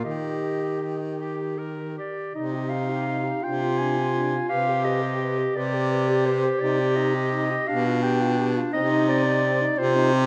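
A reverberant scoring-stage ambience surrounds this short classical excerpt for single-reed quartet, lending the ensemble a soft halo while the close-miked baritone saxophone sits up front. At a slow, rubato 56 beats per minute in 6/8 and C minor, the mood is serene and warm, with all four players sounding together from start to finish. A warm clarinet carries the lyrical melody with a soft attack, while a mellow alto saxophone, lightly touched with vibrato and smooth on top, supplies a second line from the background. A second, clear-toned clarinet fills in the accompaniment, and the baritone saxophone anchors the bass with a clear, vibrato-shaded voice. The harmony moves from an opening Eb chord into C minor at 2.3 seconds, passing over a held C in the bass before a G7 over B draws it back to C minor at 8.7 seconds.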